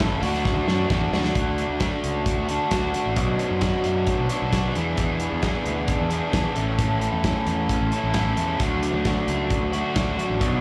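Indie rock in D lydian at 132 BPM in a straight 4/4, this short clip cut from a longer piece has a jangly, carefree mood and sounds like a live gig heard through a club PA, with light club reverb around it. Up front, an overdriven electric guitar plays a compressed, picked riff with slapback echo, while a bright, raw garage guitar sits in the background with its own riff, colored by overdrive, lush chorus and digital delay. A fuzzed, fingered electric bass growls underneath, punchy and overdriven. The loose indie drum kit is also up front, with a punchy kick, medium-tuned snare, hi-hat and toms in a mid-forward, rolled-off sound, and a drum fill runs from 0.5 to 1.4 seconds. After an opening Dadd9, the harmony moves through Dmaj7, Bm7, E7 and A before returning to Dmaj7.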